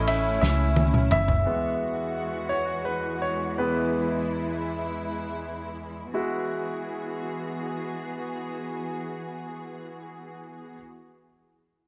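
A bright, intimate grand piano and veiled, con sordino strings open this swaying, romantic six-eight pop ballad excerpt alongside a round, punchy fingered electric bass and a small-room acoustic drum kit whose fat snare and dark cymbals carry a fill before both drop out at 1.4 seconds. From there the polished piano, with its audible action noise and long sustain, takes the lead over the smooth, lightly vibrato string chords as the music slows. Everything sits in a moderate echo chamber reverb.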